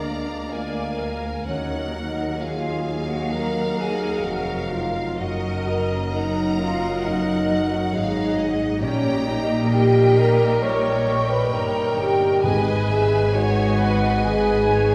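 Yearning and elegiac, this slow romantic orchestral movement moves at 66 BPM in 4/4 with a rubato feel, beginning in Eb minor and turning to G# minor at 8.8 s. A lush symphonic violin section carries the melody with a focused, smooth-topped vibrato, while a large, airy flute ensemble, a second, intense violin section and a soft-edged solo clarinet trace second lines in the background. The clear French horn section holds sustained chords and is the loudest part of all, over an accompaniment of mellow solo bassoon and an expressive, close viola section. A very quiet, ringing concert harp adds thumb-plucked arpeggios, and the bass rests on a bowed double bass section and a warm-toned cello section. Very quiet timpani with calf heads enter briefly at 12.4 s on the arrival of the G# minor chord, and the whole orchestra sits further back in a wet scoring-stage reverb, heard as an excerpt cut from a longer piece.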